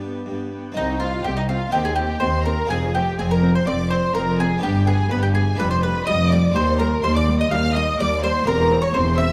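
Baroque-style classical concerto movement in C minor, heard as a short stormy, driving passage from a longer piece at 124 BPM in a straight 4/4. A bright, woody mandolin sits up front carrying the melody with its picked double strings, while a lush symphonic violin section also carries the melody in a higher register with a vibrato-rich, smooth top. Behind them a chamber violin section plays a second line and a chamber viola section fills in the accompaniment, both kept in the background. An airy, brilliant harpsichord with octave strings supports the harmony from further back, and a dark, intimate cello section anchors the bass with a soft attack, joined at 0.8 seconds by a clear, close double bass section. The chords move from G through C minor and F minor before settling on C major with E in the bass at 8.5 seconds, all captured with close, detailed microphones and light reverb.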